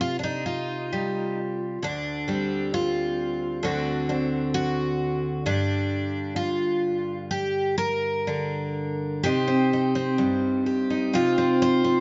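Captured live in a single room with moderate studio reverb and a top end that stops around 7.6 kHz, this short cut from a longer piece has a warm sound. A solo picked twelve-string acoustic guitar sits up front, its fresh strings giving a shimmering, octave-doubled, full-bodied tone across a range from D2 to C5. The reflective, haunting folk fingerstyle moves rubato around 65 BPM in 4/4 through Cm, D7sus4, D7 and Gm, and a new section returns to Cm at 9.2 seconds.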